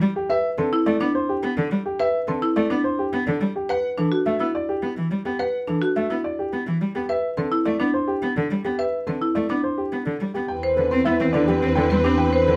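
Hypnotic and urgent, this short cut from a longer minimalist classical piece moves at 106 BPM in a straight 3/4. A bowed solo cello opens at 0.0 s with a rich, smooth accompaniment, joined almost at once by an intimate grand piano carrying the melody up front, its action noise audible in a boxy tone. Marimba arpeggios struck with hard mallets add a woody, percussive patter from a small room, circling through a rootless Am9 and an Em9. At 10.5 s the texture grows as a lush symphonic string section enters with distant sustained chords, vibrato and portamento, over a bowed double bass section holding a low E and a pure, soft-attacked alto flute singing a second line far in the background. The harmony settles there on Cmaj7/E, all under a light reverb.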